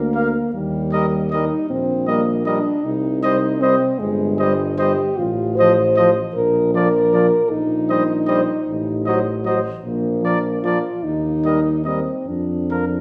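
A mellow, softly attacked French horn and a present tuba open this 13-second classical brass quintet passage up front, moving at a slow, rubato 52 BPM in 6/8 and settling into Bb major at 5.2 s. A clear trumpet carries the smooth melody while a distant, roomy flugelhorn with vibrato sings a second line, and a bright trombone in the background fills out the harmony. The triumphant, warm mood unfolds through chords such as Eb, Cm, F7/A and Adim7 before coming to rest on Bb/F, all within a wet recital-hall reverb.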